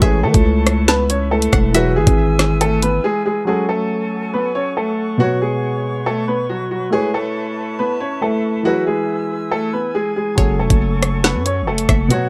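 Drill hip hop in a cold, menacing half-time feel, cut from a longer piece and set in a small room. A clear, woody upright piano carries the melody up front, slightly detuned and open, while a dark concert grand with deep bass and short sustain fills in the accompaniment beneath it. An airy flute section holds sustained chords with vibrato and tongued, expressive phrasing. Overdriven electronic drill drums with a knocking kick, woody snare and bright hats sit up front alongside a growling, buzzy 808-style bass. The drums and bass drop out for a break at 3.0 seconds and return at 10.4 seconds, and a twangy, string-like resonator pluck treated with chorus, phaser and tape echo follows the same pattern as a second line in the background.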